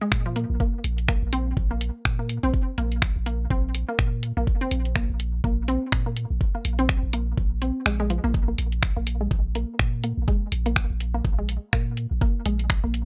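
A lightly reverberant, up-front mix opens this quirky, hypnotic minimal techno excerpt at 124 BPM with a swung 4/4 feel, where a knocking electronic kick (briefly dropping out from 7.9 to 8.3 seconds) and a booming analog drum machine with metallic, tape-warm hats and finger snaps drive a deep, punchy sine sub bass with tube saturation and sidechain pumping, while a squelchy, resonant blip pluck riff with chorus and tape echo plays over a Bb5 chord.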